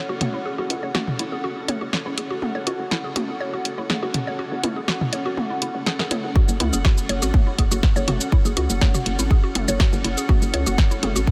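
A cloudy, evolving granular pad opens this cool, hypnotic minimal techno excerpt, quickly joined by a woody mallet-like pluck riff with chorus and analog delay, a hollow, bouncy FM bass, a house kit of cabasa, bright hats and a punchy snare, and background electronic toms, with the pad, pluck and bass pumping to the sidechain in a dreamy, reverb-soaked mix until a punchy, up-front electronic kick drops in at 6.4 seconds.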